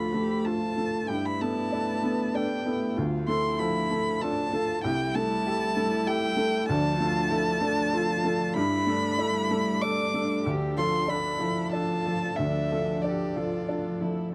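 A felt-muted upright piano, soft, mellow and intimate up front, carries the accompaniment beneath a dark, woody solo violin melody with vibrato, while a distant, floating sul tasto cello traces a second line and a warm chamber string section holds light-vibrato sustained chords in the background, shaping this melancholic, fragile neoclassical excerpt in D dorian with a rubato 3/4 feel at 96 BPM, heard in a dry, close 1970s-style studio sound with light reverb as the harmony moves through Dm, Gadd9 and Am7/C.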